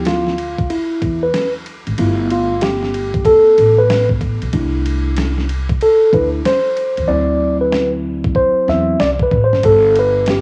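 A swung boom bap groove at 94 BPM drives this mellow, nocturnal jazz-hop cut from a longer piece, its gritty, pitched-down sampler drums pairing a thumpy kick with a medium-tuned snare, ride and hi-hats that drop out from 7.1 to 9.6 seconds, all dusted with cassette tape grit. Up front, a clean, warm tine electric piano takes the solo through Dm69, G9, C69, D9 and Gadd9. A dark, woody pizzicato upright bass on gut strings sits low underneath, all in a small, lightly reverberant room with a homespun cassette character.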